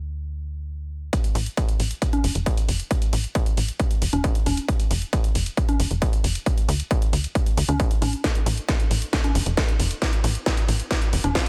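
A tight, nasal sawtooth sequencer bass pumps alone in the low register before a distorted, up-front electronic kick and a techno kit of cracking snare, congas and hats arrive at 1.1 seconds, driving a bittersweet, emotional uplifting trance build-up at 135 BPM in a large, lightly reverberant room that ends in a drum fill from 8.2 seconds in this short cut from a longer piece.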